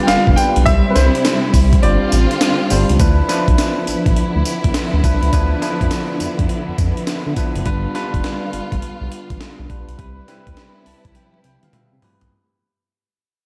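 Swung sixteenths drive this bouncy, confident new jack swing clip from a longer piece, built on a gritty, pitched-up breakbeat kit with a thumpy kick, high-tuned snare, hi-hat, tambourine and toms, with the kick dropping out from 1.8 to 3.0 seconds. A dark, sawtooth-and-square synth bass with ring modulation sits under bell-like tine electric piano and a bowed studio string section with vibrato and portamento, while a vintage grand piano with short sustain carries the melody only until 2.7 seconds; both pianos carry slapback echo. Everything sits in a lush hall for a big arena sound as the music fades out from 3.0 seconds, closing with electric piano and drum fills.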